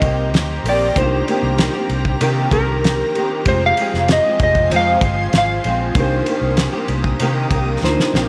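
A moderate echo-chamber reverb gives this short bedroom-pop excerpt a hazy, lonely air, with a cloth-damped, thuddy drum kit sitting up front, its fat snare, tight kick and dark cymbals rolled off at the top. At 96 BPM in a straight 4/4 and in C minor, the harmony moves from Cm7 to Fm at 3.5 seconds and back to Cm7 at 6.0 seconds. A clean, dark lap steel carries the slide melody, colored by analog chorus and slapback echo, while a small, fingerpicked nylon-string guitar with audible finger squeak wavers through ensemble chorus and a warbly pitch drift. A worn, slightly out-of-tune tine electric piano plays through a combo amp in the background, and a shimmering, ethereal pad with an octave-up sparkle and granular texture holds slow-blooming chords above. Underneath, a vintage foam-muted fingered bass stays round and amped, and the drums close with a fill from 7.8 to 8.3 seconds.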